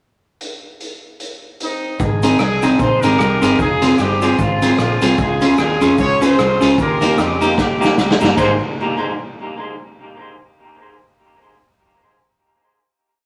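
A raw garage drum kit opens this short, upbeat ska piece at 0.4 seconds, laying down a bouncy, swung ska beat with a side-stick backbeat, a punchy kick and a gritty, saturated sound with a rolled-off top. At 1.6 seconds the horn section comes in up front with a hook-based melody, partly doubled in thirds, its tone carrying light vibrato and tube saturation while sounding distant and roomy. From 2.0 seconds a fingered electric bass walks through the Ab, Fm, Db and Eb changes with slides and a round, foam-muted tone, and a grainy cabasa ticks out eighths in the background with tape echo. Moments later a clean electric guitar sits up front with an off-beat chop, also touched by tape echo. The drums close the head with a fill before the band lands on a final Ab chord, all heard in a wet studio ambience.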